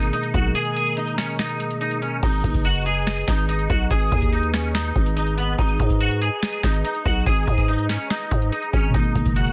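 Brooding and dark, this short trap excerpt moves at 143 BPM in a half-time feel in G# minor, resting on a G#madd9 chord. Up front, a twangy, clean electric guitar carries the melody with an ensemble chorus over a growling, buzzy 808-style bass and booming analog drum machine with crisp, softly clipped snare, metallic hats and finger snaps, while the kick drops out from 0.6 to 2.2 seconds. A warbly, lo-fi, detuned pad sustains high chords with built-in reverb, and muted, felt-like synth keys appear only at the start and again from 8.9 seconds, all within a dense, heavily limited master.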